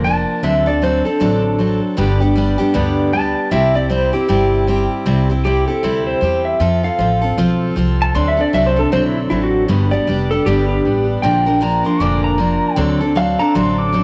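A home cassette recording with light reverb and a small-room ambience frames this easygoing, down-home honky-tonk and classic country excerpt, which moves at 156 BPM in 4/4 with swung eighths in C major. The pedal steel guitar carries the melody as a solo for the full 14 seconds, its bright, clean, twangy electric tone compressed and shaped by fingerpicks, slide and volume swells. Up front, a picked dreadnought acoustic guitar supplies full-bodied accompaniment with a cassette-tape tint. Underneath, a pizzicato upright bass with steel strings adds a woody, growly low end, thickened by tube saturation. The short passage states its main theme twice, with the harmony circling through D7, G, C, F and a Bb before returning to D7.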